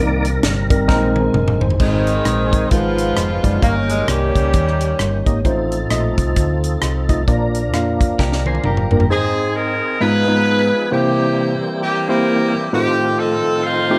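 Hopeful and uplifting, this swung uptempo gospel cut at 132 BPM opens with a lightly overdriven tonewheel organ feature through a slow rotary speaker, over a worn, slightly out-of-tune tine electric piano, a very quiet, distant French horn section and a dark, round hollow-body bass. A tight funk drum kit with a high-tuned snare sits up front from 0.2 seconds and adds fills. From 1.8 seconds a breathy, whispered tenor saxophone with scooped notes sings the melody alongside a bright, tight saxophone section. A clean, compressed electric guitar with lush chorus slips in a brief second line just before the saxophone section returns at 9.1 seconds, all in a moderate large studio reverb.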